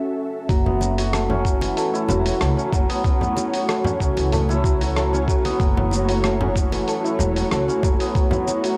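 A hammered santur sits up front in this hypnotic, earthy piece of organic downtempo, its shimmering, ringing arpeggios colored by cassette tape and tape echo. It rests on an ethereal, airy pad that opens alone at 0.0 seconds, holding sustained chords with a slow attack, ensemble chorus, built-in reverb and sidechain pumping that give it a mellow, detuned haze. From 0.5 seconds a woody, dark pizzicato upright bass on gut strings joins, also pumping with the sidechain, until it drops out at 7.9 seconds. A gritty, compressed sampler-style kick gives a thumpy pulse, while a dusty soul drum kit adds hi-hat, rim click and shaker, both carrying tape coloring. Close, dry congas played with hard hands sit in the background, and the whole excerpt, cut from a longer piece and resting on a single F#m7 chord, has the light reverb and lo-fi intimacy of a home cassette recording.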